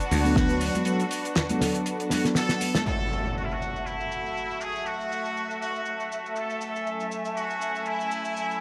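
Nu-disco at 120 BPM in F# minor, sleek and groovy, built on a swung sixteenth feel with a damped 70s drum kit whose fat snare, hi-hat and cabasa sit up front with a rolled-off top, while a growly thumbed slap bass and a punchy electronic kick appear only briefly near the start and soft-handed congas play in the background until 2.8 seconds. A nasal muted trumpet section carries the melody through tape echo over sustained, sul tasto chamber violin chords that pump against the sidechain, with chorused, detuned synth brass filling out the accompaniment as the harmony moves from D6 to F#m7. After a break and drum fill, an electronic impact lands at 2.9 seconds as filter sweeps begin on the violins and an analog polysynth, all in a dry, gritty small-room sound.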